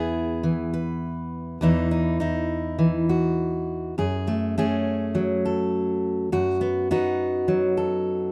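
A fingerpicked steel-string acoustic guitar carries this short folk excerpt on its own, its jumbo body giving a full-bodied, warm voice that sits up front in the sound. The mood is gentle and nostalgic, moving at 102 BPM in a straight 4/4 in E major, with the guitar tuned to A4 = 442 Hz. Across about 8.3 seconds, the part ranges from E2 up to B4, passing through E, Esus2, F#madd9 and B/F#, with the change to F#madd9 arriving at 4.0 seconds. Finger squeak on the strings adds an intimate, human detail to the picking. Light reverb surrounds the guitar, and the clip is cut from a longer piece.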